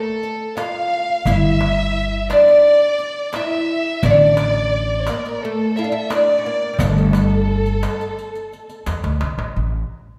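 A woody, plectrum-plucked fretless oud leads up front from the opening, as a lush violin section with portamento and a single focused, smooth-topped violin carry a second line above it. A crisp, metal-shelled darbuka and a dark-jingled riq in the background join almost at once, and a thumpy gut-strung upright bass enters at 1.3 seconds. A drum fill at 8.9 seconds closes this melancholic, hypnotic Arabic maqam excerpt, heard in the reverb of a recital hall.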